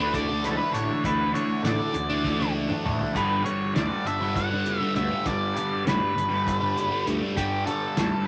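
An up-front, dark octave-fuzz lead guitar carries the melody through this trippy, kaleidoscopic psychedelic rock excerpt in 7/8. Beneath it, a bright, double-tracked fuzz guitar drives a compressed riff colored by phaser, while a picked electric bass adds overdriven fuzz. A lush string machine sits in the background with mellow, sawtooth sustained chords thickened by ensemble chorus and a soft attack, moving from Dadd9 to Gmaj7 at 3.2 seconds. The cloth-damped drum kit sounds muffled and lo-fi, with a fat snare, tight kick and dark cymbals, and it plays a fill from 2.2 to 3.2 seconds. A wet studio ambience wraps the whole ensemble in a short glow.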